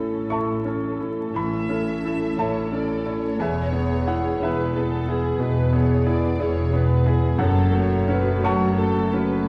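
A clear, intimate baby grand piano carries the melody up front, its action noise audible, in this lyrical, lush excerpt from a romantic movement for piano and orchestra, moving with rubato in 12/8 at 52-63 BPM in A major. Behind it, a dark, woody viola section with vibrato supplies accompaniment while pure, floating cello and distant double bass sections hold the bass, the strings bowed sul tasto, and a chamber violin section with light vibrato and soft attack enters at 1.4 s with a second line. The harmony moves from A to E at 3.4 s and to F#m at 7.4 s, and a wet scoring-stage reverb places the listener further back in the room, with a layer of vinyl crackle.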